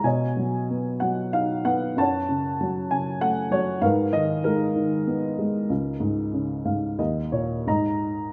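This is a lyrical classical solo piano piece in triple metre, played with a flexible rubato feel and a hopeful, sunny mood. A single upright piano carries everything, its tone dark, mellow and woody, with a slightly detuned character that lends it a homely charm. It sits up front in the mix and ranges from C#2 in the bass up to A#5. The harmony moves from Badd9 through F#m and G#madd9 before settling onto open fifths, and a brief piano fill begins at 6.3 seconds to round off this 8.3-second fragment of a longer piece. A moderate concert hall reverb gives the instrument a gentle sense of space, while the sound's upper range tops out at 7.7 kHz, keeping the overall colour soft and rounded.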